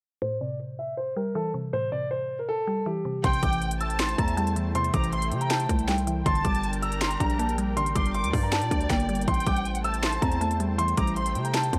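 Brooding and eerie, this half-time trap excerpt at 159 BPM in A phrygian opens with a dark, mellow baby grand piano melody and a woody, mallet-like synth pluck under a filter sweep, then at 3.2 seconds a distant, lush violin section with vibrato, a detuned sawtooth pad, a distorted, heavy 808-style bass and an up-front trap kit with a hard-clipped kick, sharp snare, crisp hats and finger snaps join, all in a dry, gritty recording as the chords move from Am7 to Gm and back.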